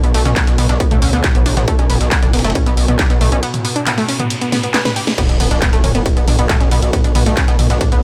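A distorted electronic kick sits up front from 0.4 seconds, driving this dark peak-time techno in B minor at 137 BPM, set in a digital ambience and cut from a longer piece. Beneath it, a gritty, aggressive synth bass built on sawtooth, sine, oscillator sync and ring modulation pumps against the kick, its resonant filter pluck and saturation pushing it forward. An analog pluck plays the riff, round and nasal with a detuned, chorused edge, treated with tube saturation, delay and sidechain pumping. A techno drum kit adds cracking snare, warm hats, handclaps, ride, crash and toms, while a very quiet, compressed sampler-style kit contributes a dusty ride and snare, and a faint, eerie FM drone warbles on B2 with a metallic, inharmonic tone. A break from 3.4 seconds brings a riser and a drum fill, and the drop lands at 5.2 seconds with an electronic impact.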